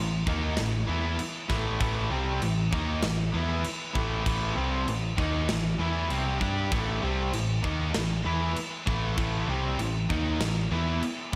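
Heavy and driving, this hard rock excerpt in A minor pounds along at 98 BPM, with a bright, overdriven cranked stack guitar on the riff, a double-tracked high-gain distorted guitar and a warm overdriven electric guitar filling the background, a dark, round, punchy hollow-body picked bass underneath, and a tight metal drum kit with bright cymbals, crash, snare and kick entering at 0.3 seconds, all set in a big arena sound with lush hall reverb.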